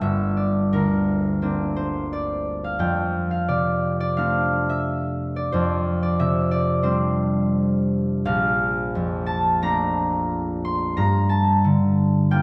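Rubato around 88 BPM in 4/4, this gentle, mysterious classical excerpt for solo concert harp spans G1 to C6, its fingerpicked, ringing tones up front as rich chords move from Bbadd9/G through F69, Cadd9/F and Bbmaj9 to Gm9 at 11.0 seconds, all bathed in a dark production and the long, wet bloom of a concert hall.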